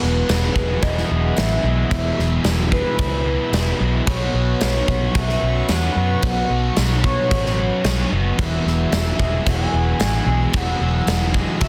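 This dreamy, blissful shoegaze and dream pop excerpt opens at once with a full band, led by a mellow, horn-like synth lead whose detuned, warbling tone carries the melody through chorus and analog delay. Behind it, a shimmering pulse-width pad holds sustained chords, while three overdriven guitars play riffs in the background: a crunchy, double-tracked one, another with subtle chorus, and a hollow-body semi-hollow guitar washed in reverse reverb. Up front, a dark, foam-muted fingered bass sounds round and punchy beside a gated 80s drum kit with bright cymbals, a medium-tuned snare and a tight kick given soft clipping, all set in an airy stone-room sound. A close, jingly tambourine joins at 0.3 seconds and drops out at 11.2 seconds. The harmony moves from Eadd9 to Bsus2 and back, in a straight 4/4 at a moderate pace, with a dense, heavily limited modern master and a small room ambience.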